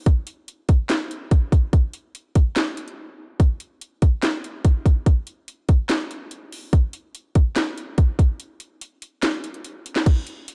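Brooding and hard-hitting, this hip hop fragment cut from a longer piece runs at 144 BPM in 4/4 with a half-time feel, carried entirely by an up-front electronic trap drum kit of hard-clipped kick, sharp snare, metallic hi-hats, handclaps and crash cymbal. The beat drops out for brief breaks at 3.0 seconds and again from 8.4 seconds, and the dark production keeps the sound dry and close.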